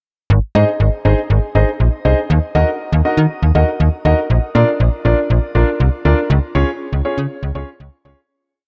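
A slap-like FM bass opens this short synth-pop piece at 0.3 s, its snappy, metallic attack sitting up front as a sequenced, digital line that decays after each note. A clear baby grand piano follows at 0.6 s with polished off-beat triad chords, bathed in a shimmer reverb that gives the accompaniment a glistening halo. At 120 BPM in a straight 4/4, the single verse moves through Ab, Ebm, Bb and Db in Ab mixolydian, giving the music an upbeat yet wistful mood. A lush hall reverb surrounds the whole production, which leans dark and warm in tone. The piece fades out from 6.3 s to its close.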